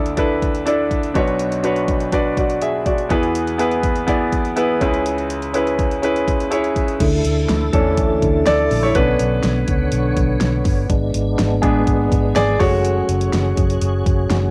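Driving and earnest, this piano-driven pop excerpt opens with a clear, deep-bassed concert grand piano over an overdriven pop drum kit with a knocking kick and fat snare, and at 7.0 seconds a lightly overdriven tonewheel organ with key click and slow rotary speaker and a round, foam-muted electric bass join as the piano takes a solo, all heard through light reverb in a cassette home recording.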